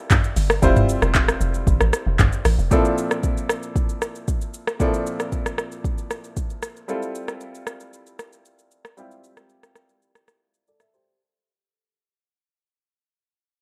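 A deep, round log drum bass stands out in this relaxed, soulful amapiano piece, its fast, percussive attack giving way to a dark, decaying tail before it drops out at 2.7 seconds. An electronic afro-pop drum kit with a tape-tinged character drives a straight four-four groove built from a deep kick, metallic hi-hats, handclaps, rim clicks, shaker and toms. A brilliant, polished grand piano plays short-sustained accompaniment chords through a low-pass filter, moving from Fmaj9 to Bbmaj9#11 and back to Fmaj9. From 2.7 seconds a filter sweep runs over the piano as the music fades out. The rough home demo mix sits in light digital reverb, with the bass, drums and piano all up front.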